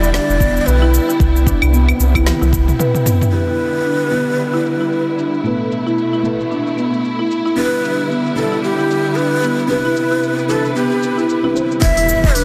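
Mystical and warm, this organic downtempo piece swings gently, led by a breathy, close-miked ney with vibrato and tape echo over lush, distant bowed strings that pump with sidechain and woody rosewood marimba arpeggios roughened by 12-bit sampler grit and a filter sweep. A round sine sub bass with tube saturation and a deep electronic kick drive the opening ahead of a drum fill at 2.3 s, while a deep house kit of claves, shaker, smooth hi-hat, snare and toms stays low-pass filtered throughout and an airy, wind-like noise texture hangs in the background. From 3.3 s a dark, detuned chord stab with chorus and phaser sits behind the melody, and at 11.8 s the bass and kick return beneath a background electronic impact.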